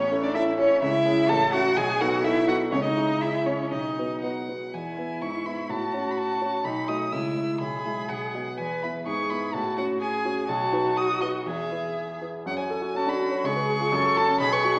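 In a straight, quick two-beat pulse, this cheerful, graceful classical-period piano trio movement unfolds as a fragment of a longer piece, with all three instruments playing throughout. A single bowed violin carries the melody with a rich, focused, up-front tone and vibrato, while one bowed cello shapes a smooth-topped second line, also with vibrato, and the concert grand supplies accompaniment marked by deep bass and short sustain. The harmony moves through minor-tinged chords before settling into brighter cadences, then shifts toward F#m near 12.5 seconds, all heard from further back in a wet scoring-stage reverb with a small-speaker character.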